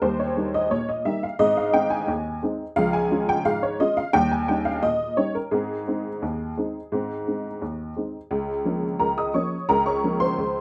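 Lively and jaunty, this short ragtime fragment in 2/4 with a straight feel is carried entirely by a solo honky-tonk upright piano, whose detuned, jangly, woody tone sits up front and spans from the low bass register up to the high treble. A moderate club reverb gives the boxy, vintage instrument a club-like presence as it moves through a chord progression of Eb, Ab, Db and Eb7 before settling back on Ab. At 8.3 seconds the music shifts into a new section on Bbm/Db, and the recording is cut off at 10.6 seconds as part of a longer piece.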